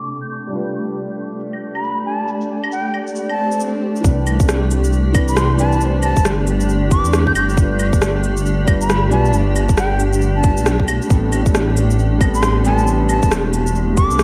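Future garage at 136 BPM with a swung 4/4 feel, this wistful, melancholic passage opens with an airy wooden flute melody carrying vibrato and delay, a soft felt-muted upright piano with audible action noise sitting in the background, a cloudy granular pad under a filter sweep, and overdriven electronic shaker, claves, cabasa and rim click. A background swell at 3.3 seconds leads into the fuller section at 4.0 seconds, where a deep, rumbling detuned saw bass sits up front and a tight, overdriven electronic kick enters, while the bass, pad and piano pump with sidechain over chords moving from Cmaj9 to G7 and Am9. The dreamy mix is soaked in lush hall reverb, with vinyl crackle and a low-pass filter adding to the haze.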